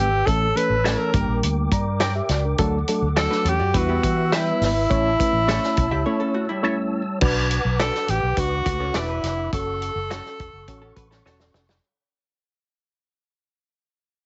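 A straight, uptempo 4/4 groove from a dry soul drum kit and a round, foam-muted electric bass drives this joyful 1960s-style soul cut, where a breathy, whispered tenor saxophone sings the melody over a reedy, slightly out-of-tune electric piano, a flute-like tonewheel organ spinning through a fast rotary speaker in the background, a dark hollow-body jazz guitar riff and clean semi-hollow guitar stabs, all pressed into a heavily compressed radio sound that breaks at 6.1 seconds, fades from 7.2 seconds and closes on a drum fill at 11.3 seconds.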